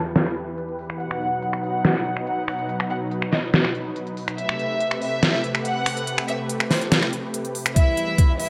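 Moving in a half-time feel, this heavy, chaotic wobble dubstep fragment rides on an up-front, tape-tinged kit of finger snaps, crisp filtered hi-hats and a deep snare, while a lush, detuned supersaw pad pumps beneath it through a filter sweep. Over the top, a bowed studio violin section carries the melody with a pure, floating sul tasto tone and tape echo. At 7.8 seconds a knocking, layered electronic kick punches in alongside a barely audible riser, all set in a lush hall reverb.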